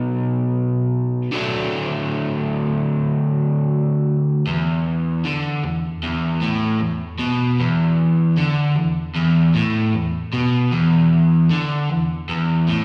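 A straight 4/4 rock pulse at 77 BPM carries this gritty, raunchy fragment of a longer piece, played by a lone electric guitar that is crunchy, bright and overdriven, picked and double-tracked, sitting up front with a slapback echo across a span from E2 to D#4. The harmony moves from B to D before settling on an E5 power chord at 4.5 s, where a new section begins and runs to 12.8 s. It sounds like a live gig heard through the venue's PA, with light recital-hall reverb around the guitar.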